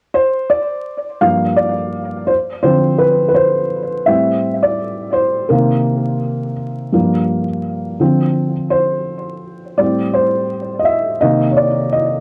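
Hip hop with a melancholic, nostalgic mood, this excerpt from a longer piece features a felt-muted upright piano playing solo, its dark, boxy tone sitting intimate and up front with short sustain. The piano enters at 0.1 seconds and takes its solo passage from 1.2 seconds, cycling through Gm7, Dm7, Am7 and Cm7 over a swung sixteenth-note feel. A low-pass filter, cassette tape and tape echo shade the piano, while light reverb, vinyl crackle and the home cassette recording add a hazy, worn character.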